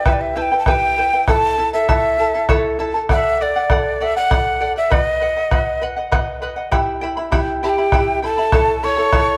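Close, detailed microphones and light reverb frame this wistful, melancholic Andean folk excerpt in 3/4 at 99 BPM, where a mellow cane quena with vibrato carries the tongued melody up front over a shimmering, fingerpicked double-string charango and a deep, dark, vintage-sounding bombo, until a breathy, bright bamboo pan flute with chiff adds an expressive second line at 7.6 s over chords moving through Em, A, D and B.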